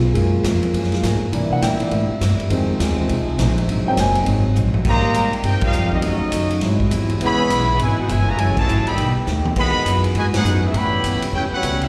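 A clear, up-front trumpet section with light vibrato and slapback echo takes the melody at 4.9 seconds, joined by a close-miked trombone section playing a second line beneath it, turning this energetic, brassy big band swing excerpt toward lush extended chords at a brisk 204 BPM. Before that, a natural-sounding grand piano with slapback echo leads the opening seconds over a woody, up-front pizzicato upright bass, a distant, roomy drum kit with a boomy kick and rolled-off top, a dark, very quiet hollow-body electric guitar, and a mellow trombone section sustaining chords in the background. Drum fills and band accents punctuate the passage, all heard through a venue's PA with recital hall reverb.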